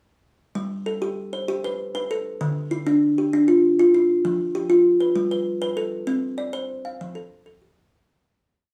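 Southern African traditional piece in G mixolydian at 130 BPM in a straight 12/8, rippling and hypnotic, where a solo kalimba, woody and hollow-bodied with short, airy thumb plucks, sits up front spinning an interlocking ostinato over chords moving from G through Dm, Fsus2 and Csus24 to F, all in a moderate studio reverb before fading out from 6.1 seconds.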